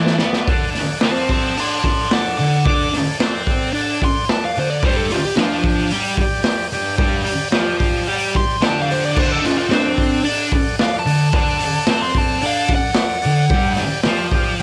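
A straight 4/4 garage rock groove bursts in with a quick drum fill from a raw, boomy, saturated kit sitting up front in a small pumping room, as a double-tracked, bright fuzz guitar riff and buzzy vintage combo organ chords back a warm, picked fuzz lead guitar solo entering at 1.0 s, the whole swaggering, rowdy passage carrying a home-recorded cassette tape character with light reverb, cut from a longer piece.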